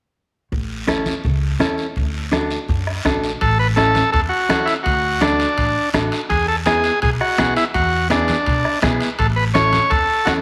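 A short, festive cumbia cut from a longer piece opens at 0.5 seconds with woody, thumpy upright bass on gut strings, a soft-beater bombo and a raspy guiro, all moving at a sunny 166 BPM in A major. Just after, a dark, compressed mellow electric guitar adds fingered accompaniment while low-tuned congas, played with hard hands, ring from the background. At 3.4 seconds a vintage, buzzy combo organ takes the melody up front, sitting clearly above the rest, and very quiet metal-shell timbales ring from a distance in a large room. The harmony moves from A to D, then settles on E7 before returning to A near the close. A moderate echo chamber reverb and a small room reverb give the festive groove a lively sense of space.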